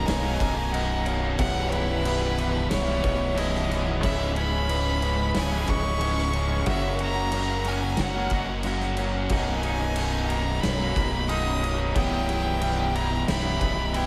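A clear, intense violin carries a euphoric, hopeful melody with light vibrato and tape echo over a growling, punchy overdriven bass up front, while two picked overdriven guitars, one biting and one crunchy with analog chorus, churn out riffs in the background of this 91 BPM post-rock passage in B major, cut from a longer piece. A very quiet, twangy clean guitar and a ringing vibraphone with tape echo trace arpeggios, and a bright, compressed pedal steel adds sustained slide chords with volume swells, moving through Bmaj7, C#m7 and F#7. A loose, distant indie drum kit with dark cymbals enters at 0.1 s, and a huge ambient reverb soaks the whole dreamy mix.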